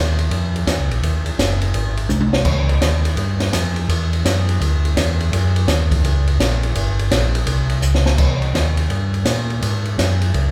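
This soul jazz organ trio excerpt moves at a brisk 167 BPM in 4/4, its eighth notes swung, with a soulful, late-night mood and tuning set slightly under standard at A4 = 439 Hz. A mellow tonewheel organ carries the bass line throughout, ranging from Gb1 to Bb2, its round, dark tone lightly overdriven and colored by chorus vibrato and a slow rotary speaker. An acoustic jazz drum kit enters at 0.2 seconds and sits up front with a natural studio-room character: shadowy cymbals, a medium-tuned snare and a boomy kick, along with hi-hat, ride, crash and toms. Short drum fills arrive at 2.1 and 7.8 seconds, the second leading into a repeat of the opening section at 8.2 seconds. A moderate church reverb with a long 2.6-second tail gives the whole performance the spacious bloom of a church or concert hall.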